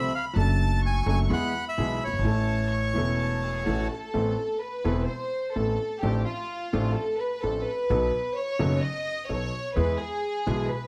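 A floating, sul tasto violin section carries this playful, passionate rubato tango excerpt, trading its second line for a solo from 4.1 s after the reedy bandoneon's melody ends at 3.9 s, while a clear concert grand with deep bass and a woody pizzicato upright bass sit up front beneath the ensemble in light reverb, the harmony turning minor as the bandoneon falls away.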